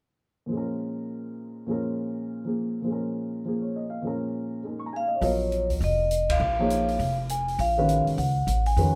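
Searching and hypnotic, this modal jazz excerpt swings at 203 BPM in Bb phrygian, opening on a dark, mellow baby grand piano that voices a Bbm7 alone from 0.5 seconds. At 5.0 seconds a ringing, metallic vibraphone with medium hard mallets and its motor off takes the melody, joined at 5.2 seconds by a woody pizzicato upright bass on steel strings and an open jazz kit with dark cymbals and a boomy kick playing hi-hat, kick and ride. The band hits an accent at 6.3 seconds, all within a moderate studio reverb that gives the cut a natural room sound.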